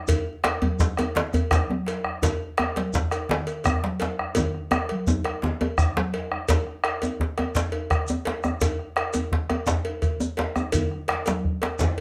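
Rolling in a compound twelve-eight metre with a straight feel, this festive, driving West African drum ensemble passage is cut from a longer piece and repeats the same section twice. A round bombo sits up front, while a deep, warm djembe also stands close in its small room. A second djembe, medium-tuned and struck with hard hands, plays farther off in a large room in the background. A metallic cowbell and a grainy, mellow shekere run through the whole passage, and ringing congas played with soft hands drop out at 6.4 seconds and return at 10.8 seconds. A drum fill at 4.4 seconds carries into the repeat of the section, and a moderate studio reverb gives the ensemble a lively, acoustic sense of space.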